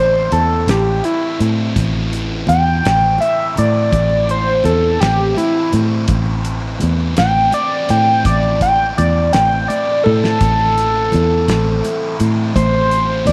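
This excerpt has a dry, studio-reverb sound with a light room around it, built on a dark, mysterious psychedelic rock groove in A minor that sits on an Am chord throughout, at a slow 56 BPM in 6/8. An overdriven synth lead carries the melody as a solo from the start, screaming and gritty with a sawtooth edge, chorus and slapback echo, sitting up front between E4 and G5. Beneath it, a thick, double-tracked fuzz guitar plays a picked riff colored by phaser, while a round, foam-muted fingered electric bass holds the low end from A1 to A2. A damped 70s drum kit with a fat snare and tight kick comes in at 0.3 seconds and plays a fill around 9.9 seconds. Very quiet, high-tuned congas with a thick skin join at 1.8 seconds, adding a small-room percussive layer beneath the rest.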